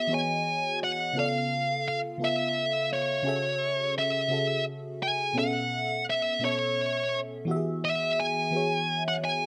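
Rolling in a slow, straight 6/8 at 57 beats per minute counted in dotted quarters, this short R&B piece cut from a longer work sits in E major with a slightly flat tuning of A4 = 436 Hz, and its mood is intimate and sensual. An FM electric piano layered with a soft pad carries the accompaniment across the full 9.5 seconds, its lush, dreamy tone mixing a triangle-like body, a noise layer and a fast, decaying attack, colored by chorus and phaser and kept mellow and up front. Over it, a high-gain lead guitar sings the melody from C#5 to G#5, its dark, distorted, picked sound given a slapback echo and also placed up front, sitting a little louder than the keys. The harmony moves from Emaj7 through C#7alt, F#m9/C#, and B9sus4 before settling on E at 7.5 seconds. The sound is dry, with little reverb and an outdoor recording that leaves out any room ambience.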